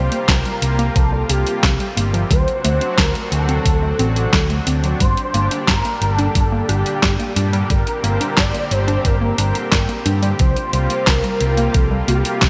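Moody and cinematic, this synthwave excerpt in G minor moves at 89 BPM in a straight 4/4 over C7sus4, D7 and Gm chords. A smooth, vibrato-laden sawtooth lead with portamento sings the melody through ensemble chorus and digital delay, above a thick, detuned unison pad that pumps to the sidechain. A lo-fi, cassette-tinged pluck plays arpeggios in the background, and a dark, round hollow-body electric bass anchors the low end. An up-front 8-bit drum machine with handclaps, hi-hat and snare enters at 0.1 s, joined by a thumpy electronic kick at 0.3 s, all set in a lush hall reverb with bright 1980s-style digital production.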